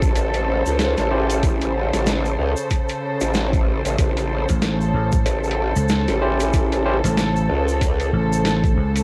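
A growling, wobbling, formant-filtered bass anchors this gritty, playful glitch hop excerpt with a swung feel, over a thumpy overdriven kick, a cassette-worn boom bap kit of hi-hat and medium-tuned snare, a grainy tube shaker and veiled, sidechain-pumped con sordino strings, while a barky electric piano drops brief stabs at 1.1 and 6.2 seconds and a punchy vintage slap bass joins at 4.5 seconds, the whole mix carrying a lo-fi cassette home-recording sound with light reverb.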